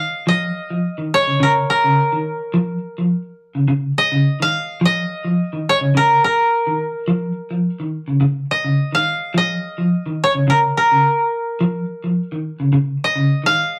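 A lightly swung sixteenth-note feel drives this afrobeat excerpt at 106 BPM in 4/4, holding a defiant, hypnotic groove on a single B-flat minor chord for its 13.8 seconds. Up front, a koto carries the melody between Bb4 and F5, its fingerpicked tone dry and woody. Beside it, an electric guitar at the edge of break-up plays picked arpeggios in a low register from Db3 to F3, its dark, slightly broken-up sound shimmering through tremolo. Both parts sound together from start to finish, and a moderate studio reverb gives the pair a modest sense of space. The rough rehearsal-room recording adds a raw, unpolished character to this fragment of a longer piece.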